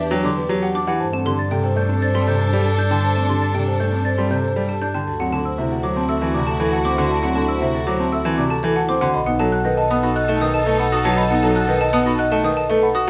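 Close, detailed microphones and a light reverb frame this hypnotic, bright stretch of minimalist classical pattern music: a buzzing, woody marimba carries the melody from the background over a dry xylophone and a ringing, mellow vibraphone spinning arpeggios, while a bright clarinet adds a second line, a worn baby grand piano accompanies, a chamber violin section holds smooth sustained chords, and a bowed double bass sits up front with rich vibrato beneath chords moving from Em7 through Gsus2 and Dadd9 to B7.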